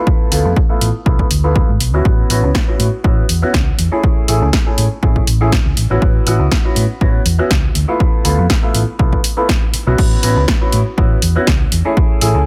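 A round, dark hollow-body electric bass, amped with tube saturation, drives this sunny, funky filtered disco house excerpt at 121 BPM in A major, with a gentle 16th-note swing and a filter sweep running through the whole passage. A tape-warm, layered electronic kick sits up front while an overdriven analog drum machine adds a punchy snare, hi-hat and crash cymbal, re-recorded in a large room, with sidechain pumping on the hats and cymbals. A bright, brilliant grand piano comps on Dm6 and A6 chords through a phaser and low-pass filter, pumping along with the bass inside a digital ambience.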